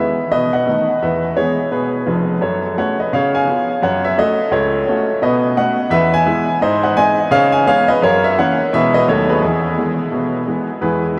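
A lively swung eighth-note pulse in 4/4 drives this exuberant stride-jazz passage, cut from a longer piece, with a baby grand piano playing alone from 0.0 to 11.2 seconds across a span from F1 to G#5. The piano sits up front with a clear, intimate tone, long sustain and audible action noise, touched by a diffuse ambient delay. A huge, wet reverb with a 7.9-second decay soaks the mix in a dreamy haze as the harmony turns through B7, E, F#m and C#7 before settling back on E.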